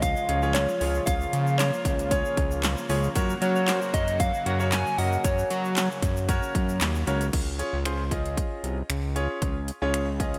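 A bright, 1980s-style digital production set in a moderate, lush hall reverb carries this upbeat, summery dance-pop excerpt in Db major at 115 BPM, where punchy, overdriven electronic drums with metallic hats, snaps and handclaps sit up front beside a fat, detuned sawtooth bass that pumps with the sidechain. A round, warbling FM synth lead sings the melody with chorus and delay until 6.8 seconds, over a smooth detuned pad in the background and a grainy egg shaker, and both of these drop away at 7.3 seconds as the chords return from Gb to Db. A clear, intimate concert grand with audible action noise and long sustain enters at 0.3 seconds and carries the accompaniment through to the end alongside the bass and drums.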